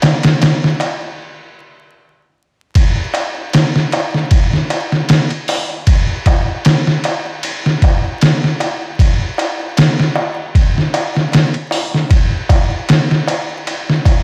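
Trip hop at 77 BPM with a slight 16th-note swing, smoky and melancholic in mood, taken from a longer piece. An up-front, sampler-style drum kit, pitched down, compressed, muffled and overdriven, lays out a thumpy kick, medium-tuned snare, hi-hat and ride cymbal, while a deep clay-shell darbuka sits quieter and distant in a large room. Both drop out for a brief stop from 1.2 to 2.8 seconds, and the whole recording carries a dry, gritty hardware character with transformer saturation and vinyl crackle.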